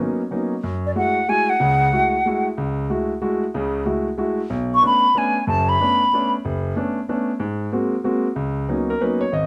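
A smooth, vintage grand piano opens this searching, cool jazz waltz in a swung three, accompanying with rich extended chords in a club room, while a pure, hollow concert flute with vibrato, tongued notes and plate reverb sits up front for two short melodic phrases at 0.9 and 4.7 seconds before the fragment breaks off into a new section at 8.4 seconds.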